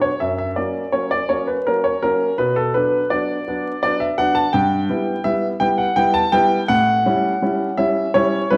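Graceful and playful, this rubato classical-period piano sonatina in B minor moves at 83 BPM in 3/4, a clear, polished grand piano sitting up front and playing alone from 0.0 to 8.6 seconds across a range from F#2 to A5 with long sustain, its lines passing through F#, Bm, Em/G and A7, all heard through the reverb of a recital hall and the warbling pitch drift, worn cassette tape and vinyl crackle of an old recording in this short cut from a longer piece.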